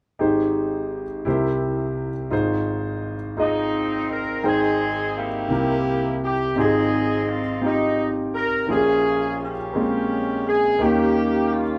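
A warm horn section with light vibrato enters at 3.4 s to carry the melody over a clear, intimate grand piano with audible action noise in this jubilant, hopeful gospel passage in Ab major and a slow 6/8 at 57 BPM, moving through Abmaj7, C7 and Fm7/Ab toward Bbm7 and Eb7, with the band captured live together in one room with moderate studio reverb.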